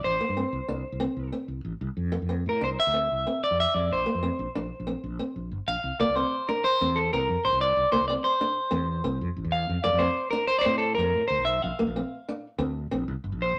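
Highlife guitar band music, joyful and danceable, moving at 124 BPM in a straight 12/8 feel. This short excerpt is cut from a longer piece. A clean, up-front electric guitar carries the melody between A4 and F5, its warm, picked tone bathed in spring reverb. Beneath it, a mellow fretless electric bass sits dark and round, direct in its attack, spanning G1 to A2. A fingerpicked, ladder-braced acoustic guitar enters at 0.2 seconds with a woody, boxy accompaniment, its old strings giving a dusky color, and stops at 13.1 seconds. The harmony moves through C5, F5 and Bbsus2, opens into a chordless stretch at 5.8 seconds, then returns to F and Bbsus2, all within a moderate studio room.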